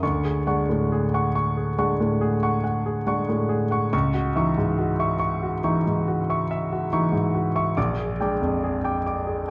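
Impressionist classical solo piano in a rubato 9/8, this wistful, nocturnal excerpt sets a clear, intimate grand piano up front, its long sustain and audible action noise ringing from Bb1 to D6 through Dmaj7#11, C#madd9 and Bb6 harmonies inside a dark, reverberant recital hall.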